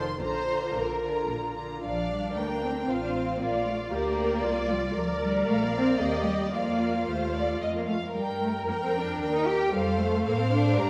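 The string orchestra sits in a reverberant recital hall that lends the sections a soft halo, and this passage of a quick classical-period movement in triple time is cut from a longer piece. Its mood is graceful and spirited, with a rubato feel that lets the phrases breathe. A rich, close violin section carries the melody in its upper register, while a second violin section plays an expressive, soft-attacked second line beneath it. Warm violas fill in the accompaniment with expressive vibrato, and a focused cello section joins the double basses on the bass line. All five sections bow together for the full 10.9 seconds, moving from a brief opening phrase into a longer passage at 1.8 seconds, over harmonies that pass through Bb, F/A, Eb, F and Gm.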